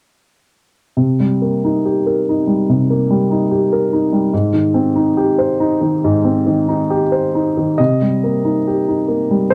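Neoclassical minimalist piano in a melancholic, reflective mood, this brief excerpt features a woody, polished upright piano playing alone and up front in a dry, close 1970s-style studio sound with a rubato feel, moving from Cm7 to Abmaj7 and back to Cm7 at 7.8 seconds.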